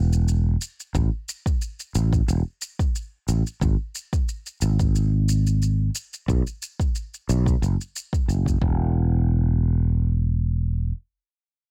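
This sunset chillout excerpt moves at an unhurried 90 BPM in 4/4, with a light 16th-note swing and a blissful, sun-soaked mood. A growly, direct fretless electric bass sits up front, holding sustained low notes, while a gritty, overdriven electronic shaker set further back comes in almost at once, and a deep, tape-warm electronic kick joins at 0.9 s. The dry, close sound gives way to a new section at 8.9 s, where the shaker has already dropped out, and the bass carries on until 10.9 s.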